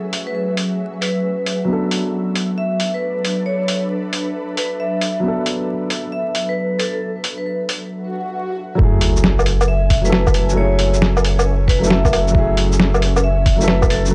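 Ghostly and nocturnal, this future garage excerpt at 135 BPM in F# minor swings on a dark, woody upright piano with 12-bit grit and analog delay, an ethereal detuned pad pumping beneath it, muffled overdriven lo-fi drums of hi-hat, shaker, snare and woodblock, and a ringing vibraphone melody with fast motor vibrato and tape echo, until an electronic swell and sub drop at 8.1 seconds ushers in a thumpy pitched-down kick and a deep, round dub sub bass at 8.8 seconds, all within a dry, gritty recording dusted with vinyl crackle.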